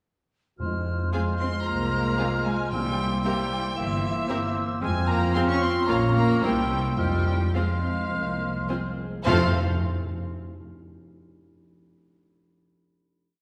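Dramatic and restless, this short, complete classical-period orchestral piece in a quick straight four sets a rich, focused violin melody over after-beat chords from a second violin section and smooth, distant violas, with lush cellos doubling the tune at the octave and a dark double bass section marking the beats, while a pure silver flute, mellow cor anglais and warm clarinet play chords in the tune's rhythm, a mellow horn section sustains chords and answers at phrase ends, and round soft-mallet timpani strike single bass notes until 3.5 seconds and again from 7.0 seconds, all heard from further back in a wet concert hall before closing on a major final chord at 9.3 seconds.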